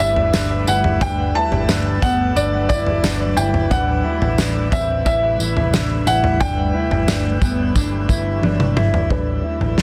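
A felt-muted upright piano carries a soft, intimate melody through delay from the first moment, over a shimmering, ethereal pad of detuned sustained chords, dark clean fingered guitar arpeggios, a round, punchy foam-muted picked bass and a loose acoustic drum kit with a fat snare and tambourine, in a floating, dreamy dream pop piece in G major at 89 BPM that moves between Gmaj9 and Am9 chords before a drum fill at 8.4 seconds, cut from a longer piece.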